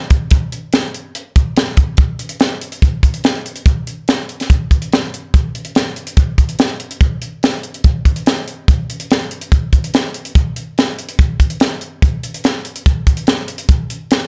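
Dry and close, this short rock cut from a longer piece sets a crisp, airy fusion drum kit up front in a studio room, its high-tuned snare, punchy kick and hi-hat driving a straight 4/4 at 144 BPM with a wistful, intricate, polished feel from 0.1 to 14.2 seconds, shifting into a new section at 2.0 seconds.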